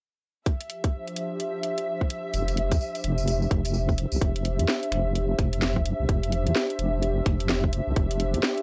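Soulful and bouncy, this cut from a longer UK garage piece rides a swung two-step groove. From 0.5 seconds a tight, overdriven electronic kick sits up front beside a garage kit of finger snaps, hi-hat and a cracking snare, while a muted symphonic violin section holds dark, veiled, lush chords on Fsus2 that pump against the beat. An airy, breathy pad with a nasal, mellow edge and a chorused shimmer fills in the texture, also pumping in time. At 2.3 seconds a deep, wobbling sawtooth bass arrives, saturated and compressed, and a jingly acoustic tambourine adds sparkle until 4.2 seconds. The whole track has a dry, gritty cassette character with only light reverb.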